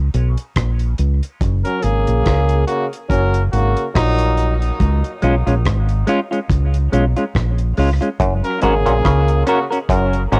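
A round, dark fingered electric bass sits up front in this hazy, laid-back dub reggae excerpt, holding down the low end with a deep tone. Beneath it, a dry acoustic drum kit with a tight kick, hi-hat and rim click carries a gentle sixteenth-note swing, its warm top rolled off and tinted by cassette tape. At 1.6 seconds a clear, punchy horn section joins as a second line, with light vibrato and a smooth top, its phrases trailing into dub echo. A clean semi-hollow electric guitar adds hollow-body accompaniment from 5.2 seconds, also filtered and echoed. At 8.2 seconds a muted, nasal clav riff enters with a stringy, percussive bite through a combo amp. The whole piece has the soft haze of a home cassette recording in a lightly reverberant room, with the harmony moving between two chords.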